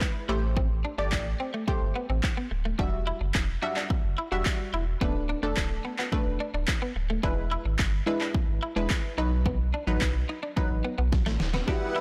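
Dance-pop at 108 BPM with an energetic, bittersweet mood, built on a punchy, sawtooth-edged chord stab with sidechain pumping, overdriven pop drums with handclaps and a fat snare, a clean picked electric guitar riff, and a round, deep sub bass moving through Am7, Emadd9, Bm7/D, E and B, before a drum fill at 11.1 seconds ushers in a reedy musette accordion and a very quiet riser at the close of this blown-out, overdriven cut from a longer piece.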